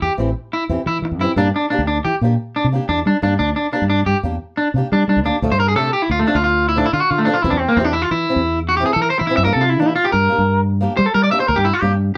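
Bittersweet and warm, this highlife passage in 12/8 at 119 BPM has a twangy, slightly broken-up electric guitar playing up-front arpeggios over a round, punchy fingered electric bass and a boxy fingerpicked swing-style acoustic guitar, with the band sounding live in one room under light reverb as chords move from C to Gm and a clean electric guitar solo arrives at 5.4 s.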